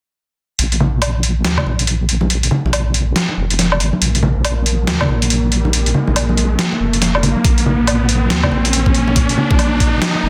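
A half-time deep dubstep groove at 140 BPM in 4/4, swung at 62% on the sixteenths, opens at 0.6 seconds as the wobble bass and the trip hop sampler-style drum kit arrive together, with congas joining just after. The mood is cavernous and meditative, built on a single Bb5 chord through this short cut from a longer piece. The heavy, saturated sawtooth-and-sine wobble bass sits up front with chorus, beside a gritty, pitched-down kit of hi-hat, medium-tuned snare and woodblock that sounds tape-warm and re-recorded in a small room. The congas add a bright, thin-skinned, damped acoustic tone played with soft hands. From 2.9 seconds a deep, moody ambient pad of detuned unison sawtooth and sine with a sub octave swells slowly in the background under chorus and its own reverb, its filter sweeping throughout the build-up while an electronic riser climbs from 3.1 seconds. At 7.4 seconds an overdriven, knocking electronic kick drum joins, all held in a moderate echo chamber and a dense, heavily limited modern master.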